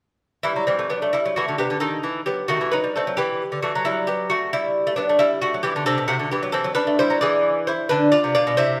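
A bright, delicate fingerpicked lute with nylon and double strings, some doubled at the octave, sits up front in this grave, flowing baroque-style classical dance in E minor, moving in a rubato 12/8 at 89 BPM by dotted quarters through Em, B7/D#, Am and E7, playing alone from 0.4 to 8.8 seconds in a brief extract from a longer piece, bathed in the wet reverb of a recital hall.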